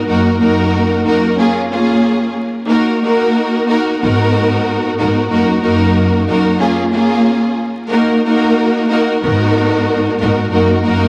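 Reflective and dark, this hip hop excerpt moves at 92 BPM in 4/4 with a swung sixteenth-note feel, set in Eb minor with tuning slightly above standard at A4 = 441 Hz. A warm studio string section plays alone from 0.0 to 11.1 seconds, bowed as an ensemble and sitting close and up front, spanning Gb2 to Bb4. Vibrato and portamento give the strings an expressive, singing quality, and a delay trails behind their lines. The harmony circles through Ebm/Gb, Bbm7, Ebm and Abm7, with a shift to a new section at 2.7 seconds. A lush hall reverb soaks the dreamy mix, and a layer of vinyl crackle adds a worn texture.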